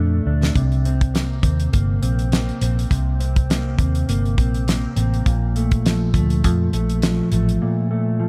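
An echo-heavy, roomy mix frames this wistful, hazy fragment of indie bedroom pop, moving in 4/4 with a light swing on the sixteenths and a loose drift between Bbmaj7 and C7 chords. A mellow, dark, clean electric guitar sits up front, its fingered chords soaked in lush chorus, vibrato and tape echo. Beneath it, a vintage muted fingered bass adds a round, foam-muted, amped low end, and a damped 70s drum kit enters at 0.4 s with a short fill, its fat snare, tight kick and hi-hat sounding dry and rolled-off on top before stopping with the bass at 7.6 s.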